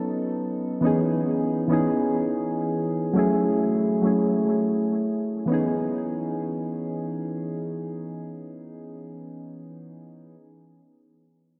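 Smooth and relaxed, this short chillout excerpt rests on soft electric-piano-like synth keys with a round, dark, full-bodied tone, coloured by chorus, delay and a low-pass filter that sweeps through the opening 5.5 seconds. The keys carry a gentle progression moving from B7 to C#m7 and F#m7, then settle back on C#m7 at 5.5 seconds. A lush hall reverb soaks the whole mix, giving it a dreamy sense of space.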